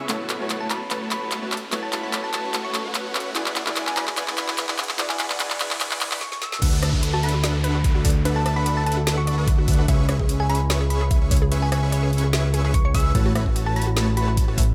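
A fat, saturated analog bass sits up front of this playful, lush future bass excerpt in A major, pumping under a dense, compressed supersaw riff and a round, tine-like synth pluck melody dressed in chorus, phaser and tape echo, all moving at 147 BPM in a half-time feel. The opening build-up pairs a clear grand piano, a shimmering ambient pad, a riser and a filter sweep on the supersaw with trap drums featuring a woody snare and metallic hats, leading to a brief break at 6.2 seconds. The drop lands at 6.6 seconds with a knocking electronic kick, joined a moment later by a punchy unison pluck arpeggio tinged with cassette tape, over chords moving from D69 to C#m7 to A6.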